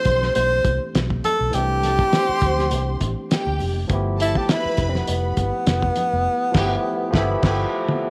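Over a lightly swung sixteenth-note groove at 102 BPM in 4/4, this lush, romantic 1970s-style soul passage in C major rests on a cloth-damped, thuddy drum kit with a fat snare and dark, muffled cymbals, a round, foam-muted fingered electric bass, and soft-handed, high-tuned congas that ring very quietly until 6.3 seconds. A breathy, whispered tenor saxophone carries the melody up front with an intimate vibrato, joined by a smooth bowed string section on a second line and a barky tine electric piano, lightly overdriven and coated in lush chorus, moving from C69 to G13. The band hits an accent at 6.3 seconds, and a drum fill from 7.4 seconds closes the excerpt in light studio reverb.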